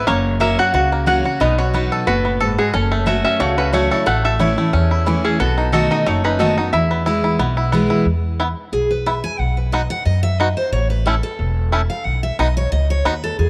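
This joyful, driving bluegrass excerpt opens with banjo, two lap resonator guitars and a picked steel-string acoustic guitar all sounding together, and the upright bass joins a moment later at a brisk 180 BPM in E major with a light swing. The fingerpicked banjo carries the melody up front with a twangy, percussive bite. Above it, a metallic, nasal slide line on one resonator guitar is joined by a lower second line from the other, which sits in the background, and both fall away at 7.7 seconds. The bright, full-bodied jumbo acoustic guitar supplies accompaniment before taking a solo from 8.1 seconds, while the banjo keeps playing until 13.1 seconds. Underneath, the pizzicato upright bass, with its gut strings, is woody, dark and thumpy, and a light reverb is heard on the recording.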